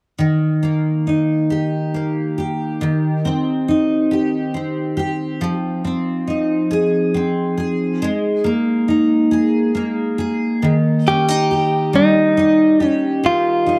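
A bright, full-bodied double-tracked steel-string acoustic guitar sits up front, picking a heartfelt, romantic accompaniment in a slow 6/8 pop sway at 46 BPM, moving through Eb, Cm/Eb, Fm7 and Absus2 before returning to Eb and settling on Ebadd9. At 11.1 seconds a clean, scooped and compressed electric guitar, recorded direct and placed up front, enters with a short picked melody. A moderate plate reverb and a dark, warm production round out this fragment of a longer piece.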